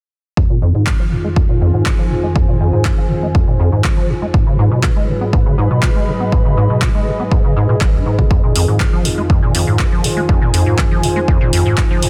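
Acid house in F minor at 121 BPM, this hypnotic, gritty fragment of a longer piece moves in a straight 4/4 over chords that shift from Fm7 to Abm7 at 4.3 seconds and back to Fm7. A squelchy, resonant square-wave acid bass drives a riff with a filter sweep running throughout, its hollow tone thickened by tube saturation, ensemble chorus, cassette tape coloring and digital delay. Beneath it, a dry, overdriven electronic kick sits up front, joined at 0.9 seconds by a punchy analog drum machine playing handclaps and hi-hat, both with small room reverb. A smooth, detuned sawtooth-and-triangle analog pad holds sustained chords with lush chorus and sidechain pumping. Higher up, a lo-fi, nostalgic tape-like pad enters at 0.7 seconds with a slow attack, warbling texture, chorus and its own reverb, all within a dense, heavily limited modern master with light digital ambience.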